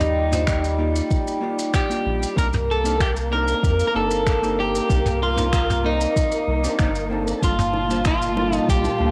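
Sunset chillout at 95 BPM in a straight 4/4, this brief cut from a longer piece feels warm and wistful, moving from Ebmaj7 to Cm9 at 2.4 seconds and Gm9 at 7.4 seconds. An electric guitar at the edge of break-up carries the melody up front, its picked, compressed tone slightly broken-up and colored by cassette tape, analog delay and shimmer reverb. Beneath it, a dark studio string section holds lush, woody bowed chords with vibrato and a smooth top, while a vintage hollow-body jazz guitar adds clean, picked accompaniment from 0.3 seconds. A round analog bass gives deep, nasal low notes with a fast attack and long sustain. The rhythm comes from a vintage brush drum kit with finger snaps, shaker and toms, a soft, tape-warm electronic kick, and very quiet low-tuned bongos that appear at 7.7 seconds. The whole has the intimate feel of a cassette home recording in a small room, touched by moderate spring reverb.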